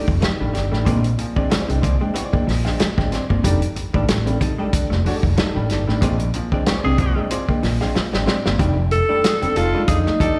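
A hollow-body jazz guitar and a bright, slightly detuned upright piano open this gritty funk excerpt at 93 BPM in F mixolydian, both carrying slapback echo. An overdriven, punchy fingered bass, a tight, mid-forward soul drum kit and a dark, scooped semi-hollow guitar riff with lush chorus join them in a swung sixteenth-note groove over F13 and Bb9, and a raspy, forceful tenor saxophone second line enters at 6.8 seconds during a band accent. After a drum fill, a breathy, whispered alto saxophone with slapback echo comes in at 8.9 seconds for an intimate, close-miked solo, all heard as a live gig through the venue's PA with recital hall reverb and small room ambience.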